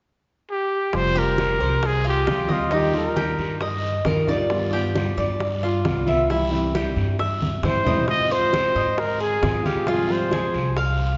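A breathy, whispered trumpet opens this nostalgic Cuban son and guajira at 0.5 s, carrying the melody up front with light vibrato in F minor at 134 BPM, while fingerpicked nylon-string guitar, woody pizzicato upright bass, very quiet round bongos, thin-skinned background congas and a distant raspy guiro join at 0.9 s, a metallic, double-strung Cuban tres adds bright picked arpeggios from 1.2 s, and a drum fill leads into the trumpet's return, the ensemble set within a wet concert-hall reverb.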